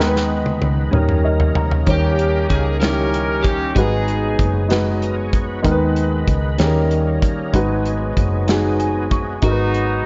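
A drum fill on an up-front acoustic kit with a punchy kick opens this slow, solemn and soulful gospel excerpt in 6/8 and G# minor at 64 BPM, over a woody upright piano, a round, dark hollow-body bass, a gritty overdriven tonewheel organ with slow rotary speaker and chorus vibrato, and a very quiet, distant French horn section holding sustained chords, before a mellow, softly attacked horn section and an overdriven slide guitar with slapback echo carry the melody from 1.9 to 4.7 seconds and return at 9.4 seconds, all heard through a light small-room ambience and the worn, warbling pitch drift and muffled top of old cassette tape.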